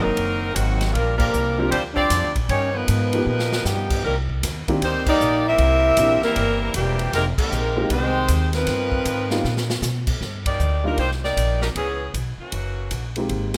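Big band swing in C minor at 156 BPM, dramatic and sultry, with an edgy, tight saxophone section carrying the melody up front over a trombone section's soft-attacked second line, which drops out at 9.8 seconds, while a woody pizzicato upright bass holds the low end. A swinging drum kit with a punchy kick and airy hall sound enters at 0.2 seconds, and an intimate baby grand piano with audible action noise joins at 1.6 seconds, moving through altered dominants and minor ninth chords. The band hits accents at 1.1, 5.0 and 10.4 seconds, among others, with two brief drum fills, all under light reverb in this excerpt cut from a longer piece.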